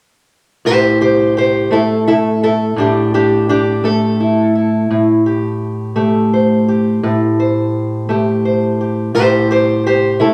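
A moderate, roomy studio reverb surrounds a single fingerpicked steel-string parlour guitar that sits up front, its old strings giving a dark, woody tone. This mournful, soulful acoustic country blues fragment, cut from a longer piece, moves in 12/8 and rests on an Am7 chord. The guitar plays alone from 0.7 to 10.3 seconds, reaching from its low bass register up into its middle range.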